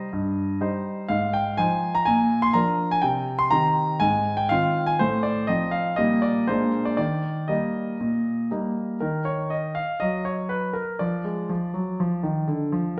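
Cheerful and playful, this classical-period piano sonatina in Eb major moves at a straight 122 BPM in 4/4. A solo concert grand piano, clear and natural with deep bass and long sustain, sits up front in a wet recital hall reverb, spanning G2 to C6. The harmony opens on Cm and settles onto Eb at 7.0 s, then turns darker at 9.0 s with Ebm and a diminished chord before this brief cut from a longer piece ends at 13.0 s.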